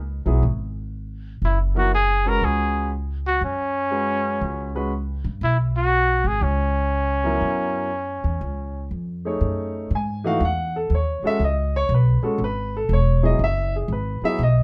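Heard in light reverb with each part up front, this spiritual, hypnotic modal jazz excerpt swings at 120 BPM in 4/4, as a woody pizzicato upright bass on steel strings and a warm concert grand piano with deep, open low end lay down the accompaniment while a vintage-toned solo trumpet with light vibrato and scooped notes carries the melody from 1.4 s to 8.9 s, before the harmony settles into F# dorian at 9.4 s.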